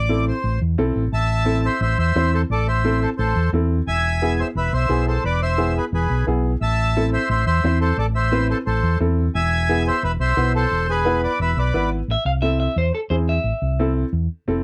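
A fiery, passionate Latin fragment opens with a reedy, airy accordion carrying the melody over a round, punchy fingered electric bass and a woody, slightly detuned upright piano with audible action noise, until the accordion stops at 11.9 seconds and a bright, twangy electric guitar at the edge of break-up adds a second line from 12.1 seconds, heard in a dry, close 1970s-style studio sound.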